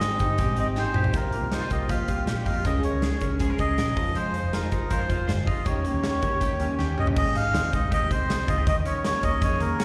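This sounds like a live gig heard through the venue's PA, carried by recital-hall reverb and a small room ambience, in a cut taken from a longer piece of breezy, youthful jangly indie pop. Up front sits a reedy, nasal melodica carrying the melody, close-miked and touched with slapback echo. Beneath it, a woody steel-string acoustic guitar with old strings picks the accompaniment until 7.2 seconds, while a twangy, scooped clean electric guitar plays arpeggios through lush chorus and slapback echo. A dark, round, foam-muted bass with tube saturation holds down the low end. The big rock drum kit drives it all with a punchy kick, medium-tuned snare, and bright cymbals, and it marks drum fills at 0.8 and 6.8 seconds as the chords move from Abmaj7 through Fm7 and Eb7 and back to Abmaj7.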